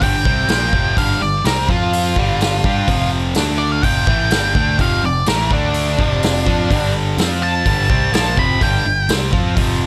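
A dark octave-fuzz lead guitar solos through this driving, swaggering blues rock and southern rock passage, cut from a longer piece, its distorted picked line ending at 9.1 seconds. Beneath it, a bright, double-tracked overdriven rhythm guitar pushes its riff up front, a growling fingered bass adds punchy overdriven low end, and a vintage acoustic kit in a small room brings natural hi-hat, a medium-tuned snare and a punchy kick, all with a warm, rolled-off top. The power-trio groove moves over G5, F5 and D5 chords in a straight 4/4 feel, bathed in light reverb.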